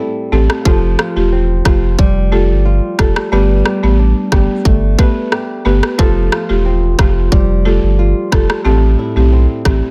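Sultry and tough, this dancehall passage, cut from a longer piece, opens on a dark, boxy flamenco guitar playing thumb-plucked arpeggios over Am7, Fadd9 and Gadd9 chords. A dry, woody, buzzing marimba struck with medium mallets joins at 0.3 s with sidechain pumping, alongside a round, deep sine sub bass. An electronic, produced island pop drum kit enters at 0.5 s with a tight, overdriven kick and rim click, and it sits up front with the bass in the studio ambience.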